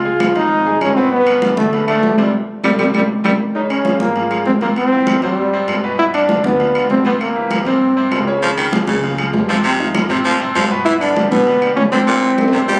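Danceable and passionate, this fast salsa cut from a longer piece drives along at 197 BPM in a straight 4/4. A bright, punchy trombone carries the melody up front with light vibrato and a smooth top, dropping out briefly before returning at 10.8 seconds, while a raspy, gritty baritone saxophone enters at 8.4 seconds as an up-front second line. Underneath, a brilliant, polished upright piano supplies accompaniment in the background, and a dark, thumpy pizzicato upright bass on gut strings anchors the low end. Ringing, high-tuned congas played with soft hands and metal-shelled timbales sound distant in a large room, with woody claves sitting in the background. The band hits an accent from 2.3 to 3.6 seconds as a drum fill breaks in, and another fill closes the passage, all captured on a phone in the room with light club reverb and compression.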